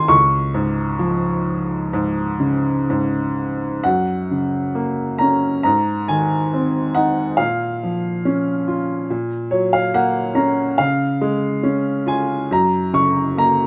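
A clear, boxy baby grand piano sits up front from the very first moment, playing a peaceful, tender classical solo in 4/4 with a gently rubato feel. The opening phrase gives way at 3.8 seconds to a longer second passage, where the harmony moves through Gb, Ab and Bbm before settling back toward Db. At 9.1 seconds the piano adds a brief fill, and the harmony then rests on Db and Gb. The playing covers a generous span from Db2 to Db6, lending the lyrical lines both depth and shimmer. A light reverb surrounds the instrument, and the piece is heard as a short portion of a longer work.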